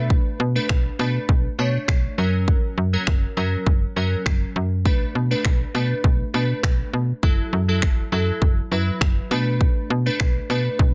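Driving and energetic, this dance-pop excerpt moves at 101 BPM in B minor, cycling through Bm7, F#, and F#m7 chords. A punchy, layered electronic drum kit sits up front with finger snaps and a clipped snare, while a snappy FM bass with a metallic attack pumps with sidechain compression from the start. Glassy, detuned digital keys with chorus and a filter sweep fill in the harmony, all set in a digital ambience under a dense, heavily limited modern master.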